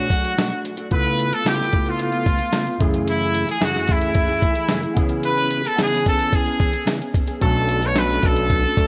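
Mellow and wistful, this short cut from a longer indie and bedroom pop piece moves at 111 BPM in a straight 4/4, with a brilliant, punchy trumpet carrying the melody up front through lush chorus and digital delay over a dark, clean electric guitar with ensemble chorus and warbly pitch drift, plus a soft, flute-like tonewheel organ with key click and a fast rotary speaker. A dusty, gritty sampler-style drum kit with a thumpy kick and medium-tuned snare sits compressed and up front, while a fat, detuned analog bass with a filter sweep enters at 7.4 s. The chords drift from Bm7 through C#7alt, F#m9 and C#m7 back to Bm7, all wrapped in light reverb and the warbling character of worn old cassette tape.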